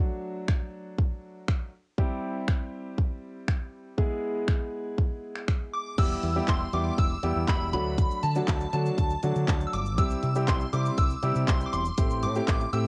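A clear, polished baby grand piano opens this bittersweet, driving dance-pop excerpt at 120 BPM, its chords pumping against the beat through a cassette-tape haze, and a layered electronic pop kit arrives almost at once, up front, with a punchy kick, handclaps, finger snaps, hi-hat, shaker and crash. At 5.7 seconds a shimmering FM bell melody enters high above, bright and dreamy with a fast attack and long release, thickened by ensemble chorus and analog delay. A round, fingered electric bass joins at 6.0 seconds with its own sidechain pumping as the harmony turns toward Em, D, C and a closing Am7, all in a dry, home-cassette sound.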